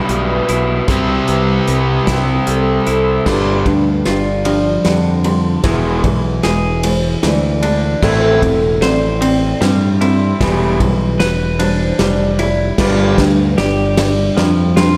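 A lush, wet hall reverb gives this cut from a longer post-rock piece a big arena sound, its cathartic, melancholic mood unfolding in a straight 6/8 over chords that move from Em/B and Cmaj7 toward G7, E7, Am7 and Em7. A clean, compressed semi-hollow guitar and a ringing, metallic vibraphone with slow motor vibrato play arpeggios throughout, both with slapback echo and the vibraphone set in the background, while a growling, overdriven fingered bass and a loose indie kit with a tight kick and rolled-off top hold down the low end. An up-front, distorted guitar riff opens the track until 3.3 seconds, when a bright, raw garage guitar takes over with an overdriven, slapback-echoed riff as a build-up and drum fill carry through to 15.0 seconds.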